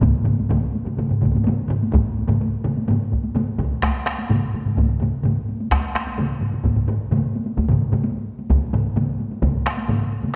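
Powerful and ceremonial, this short excerpt from a longer piece of Japanese traditional taiko drumming moves in a straight 4/4 at 128 BPM, speeding up throughout its roughly 10 seconds. Four taiko ensemble parts carry the percussion, three struck with hard sticks and one with heavy sticks, all acoustic. Two of the hard-stick parts sit in a live room, while the remaining hard-stick part and the heavy-stick part are close and dry, and three parts sit up front in the mix. The heavy-stick part drops out at 9.5 seconds while the others play on to 10.3 seconds, after the music shifts into a new section at 3.8 seconds. A dark production and a concert hall reverb with a 1.9-second decay give the ensemble a resonant, ceremonial weight.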